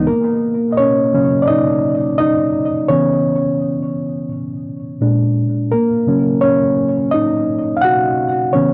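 A swung 4/4 hip hop groove at 85 BPM frames this nostalgic, reflective excerpt, where a lone reedy, worn and slightly out-of-tune electric piano sits up front, heard through built-in speakers with cassette tape grit, a low-pass filter and tape echo, playing alone from 0.1 to 8.7 seconds over a D#m7, C#m7, A#7 and D#m7/C# progression in a gritty hardware recording bathed in short studio reverb.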